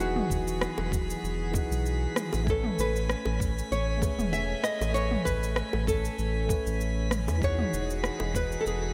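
This short sunset chillout excerpt opens with a small, fingerpicked nylon-string guitar carrying the melody, finger squeak audible, set over a clean tine electric piano heard through its built-in speakers, both touched with tape echo and slapback echo. A round, dark analog bass sits up front with a fast attack and sustained notes, while a bright, earthy chamber string section holds close, bowed chords. An overdriven deep house kit of rim click, shaker and toms moves at 97 BPM in 4/4 with a light swing on the 16ths, joined at 0.3 seconds by a gritty, thumpy electronic kick and at 0.8 seconds by very quiet, tight, high-tuned bongos played with soft hands. High above, a glassy harmonics texture drifts calmly with chorus and long, slow-releasing tones. The relaxed, sunny harmony moves from Emaj9 to Amaj9 and back, all set in a lush hall reverb with a big arena sound.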